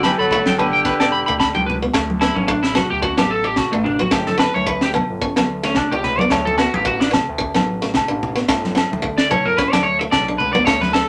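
A loosely swung 16th-note groove at 110 BPM in 4/4 drives this carefree, sunny highlife guitar band fragment, with a tight funk drum kit's high-tuned snare and snug kick, close, ringing agogo bells, bright thin-skinned congas and a smooth, mellow synth bass underpinning everything as the harmony sways between G and D5. A breathy alto saxophone with scooped notes and vibrato carries the melody over a distant, roomy tenor saxophone second line, and both stop at 1.7 seconds. From 1.9 seconds a clean electric guitar solo takes over, set against a twangy, slightly broken-up electric guitar playing up-front arpeggios and a boxy, picked acoustic archtop guitar, all in a moderate small-room reverb.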